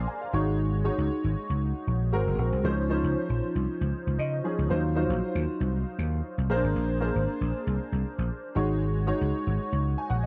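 A dry, close studio sound with small room ambience frames this slick, urban slice of polished 1980s jazz-funk pop, cut from a longer piece and moving at 117 BPM in 4/4 with a light swing on the sixteenths. A growly, punchy vintage slap bass sits up front throughout, while a clear grand piano with long sustain and an analog chorus comps through lush extended chords such as Ab9, Dbmaj9 and Ebm69 before returning to Ab7sus4. The piano adds a brief fill from 3.9 to 4.7 seconds.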